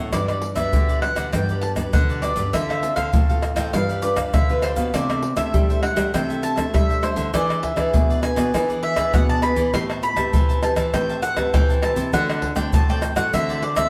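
Up-front egg shaker, tight surdo, pandeiro and tamborim, played close with hard hands, drive this lively, festive samba and choro cut in G major at 100 BPM, while a mellow, round mandolin carries the melody on double strings over a woody, old-stringed fingerpicked nylon-string guitar, a second classical nylon-string guitar on bass and a crisp cavaquinho in the background, all playing live in one stone room with a wet reverb as the chords move from Gmaj7 through C69 and E7 to D7.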